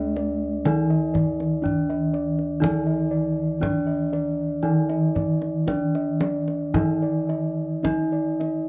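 Javanese gamelan in a serene, shimmering mood at a slow 53-61 BPM, where an up-front, band-limited bronze metallophone carries the melody over a second, close-miked metallophone whose paired tuning gives full, beating accompaniment, while mellow bossed gongs played with padded beaters add airy arpeggios and a soft, round bass line that stops at 7.9 seconds, and a deep kendang struck with hard hands keeps time in a dry, vintage studio sound touched with light reverb, all in a short cut from a longer piece.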